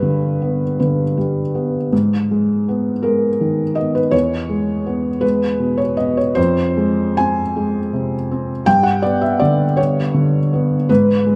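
A rough home-demo sound with lossy compression artefacts and a moderate plate reverb frames this intimate, reflective fragment of neoclassical minimalist piano, a felt-muted upright played solo and rubato in 6/8 at 54 BPM, boxy and dark with audible action noise up front, ranging from E2 to Ab5 as its chords move from G through Abmadd9, E and Fm back to G at 8.7 seconds, tuned to A4 = 443 Hz.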